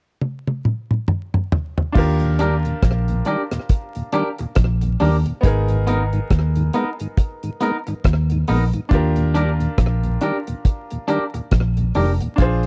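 A deep, dry reggae drum kit opens this smooth, romantic lovers rock excerpt with a fill from 0.2 seconds, its tight kick, rim click, toms, hi-hat and crash sitting up front with a dark, rolled-off top. At a relaxed 69 BPM in 4/4 with a swung sixteenth feel, the groove settles in Eb major as the full band arrives around 2.0 seconds on an Ebmaj7 chord, moving to Abmadd9 and back. A vintage muted fingered electric bass joins then, round, punchy and foam-muted, holding the low end up front alongside the drums. A bright, brilliant grand piano and a mellow tonewheel organ with key click, vibrato and a slow rotary speaker fill in the accompaniment, while a clean, twangy, compressed electric guitar adds up-front stabs. The sound is a close, dry 1970s-style studio recording with a bed of vinyl crackle.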